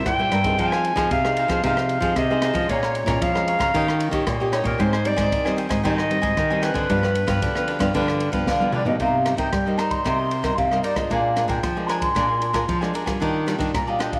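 A clear, distant clarinet opens this nostalgic, yearning samba and choro excerpt in C minor at 114 BPM, soloing over crisp picked cavaquinho, an up-front fingerpicked classical nylon-string guitar, a second, bright nylon-string guitar with fresh strings and audible finger squeak carrying the bass, and an open acoustic jazz kit with dark cymbals, a medium-tuned snare and a boomy kick. As a drum fill begins at 8.5 seconds, an airy, mellow wooden baroque flute takes the melody, expressive and tongued with vibrato and set back in the mix. The harmony moves through rich seventh chords and settles toward Ebmaj9, all within a small room's ambience and a moderate echo-chamber reverb.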